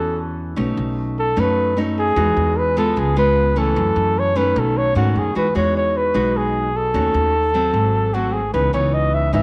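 A warm flugelhorn with a light vibrato carries the melody in this relaxed, sophisticated bossa nova excerpt, playing a jazz-style solo through the opening 5.4 seconds. Beneath it, a classical nylon-string guitar is fingerpicked in the accompaniment, with the odd finger squeak audible, while a pizzicato upright bass on steel strings supplies a woody, growly low end. All three parts play throughout the brief 9.4 seconds and sit up front in the mix. The harmony moves through lush jazz chords such as Emaj9, C#7 and F#m7, then turns at 5.4 seconds toward D#m7b5, G#7b9 and C#m9. A moderate echo-chamber reverb lends the studio sound a gently spacious finish.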